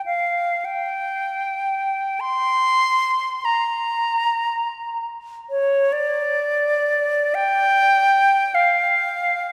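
An unaccompanied silver concert flute opens at 0.1 s with an airy, metallic tone, soft attack and vibrato, sitting up front as it carries a lonely, mournful classical line in G minor between C#5 and C6, moving freely in a rubato 6/8 at 26-53 BPM, while a lingering church reverb places the listener further back in the room in this short passage cut from a longer piece.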